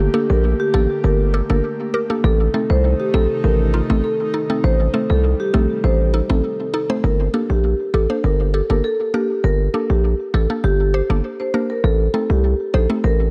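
A warm marimba melody, a soft, breathy pad and a punchy, heavy 808-style bass open this tough, hypnotic dancehall cut in G minor at 100 BPM, moving between Gmadd9 and Adim chords. A woody, round synth pluck with chorus, phaser and tape echo fills in the accompaniment, while the marimba carries its own tape echo and the up-front bass hits hard. The detuned, full-bodied pad drops out at 7.0 s, leaving an echo-heavy, lightly reverberant mix with a dull top end that ends abruptly at 13.3 s as a fragment of a longer piece.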